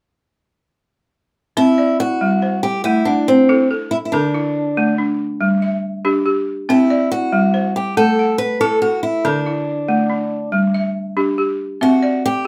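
A moderate studio ambience surrounds this flowing, joyful cut from a longer piece of West African string and xylophone music in a straight 12/8. A boxy, picked old ladder-braced acoustic guitar with old strings carries the melody up front, while a buzzing, airy balafon struck with hard rubber mallets plays dry, woody arpeggios beside it. Both enter at 1.6 seconds and play through to 12.5 seconds over a repeating cycle of C, Am, D5 and G5.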